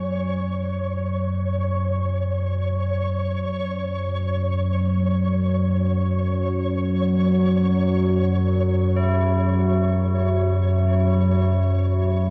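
Dark ambient drone in free time, cut from a longer piece, where an up-front analog drone, warbling and detuned with chorus, sustains low beneath quiet, solemn tubular bells ringing metallic arpeggios through a diffuse delay and a faint, flickering grainy texture high above, all set in a cavernous cathedral reverb of 7.0 seconds that gives the 12.3 seconds a dark weight.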